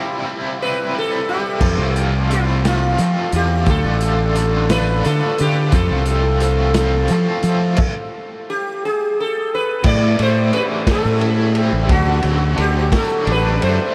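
A slow 6/8 pulse at 58 BPM carries this hypnotic, trippy psychedelic rock excerpt, where a buzzing, shimmering sitar melody with analog delay and a biting, double-tracked overdriven guitar riff with tremolo sound from the start, a round fuzz bass and a crunchy, gritty breakbeat kit with dark cymbals join at 1.6 s, the music drops into a stop at 7.8 s, and it turns to A dorian at 9.9 s, all within a dreamy mix soaked in huge ambient reverb.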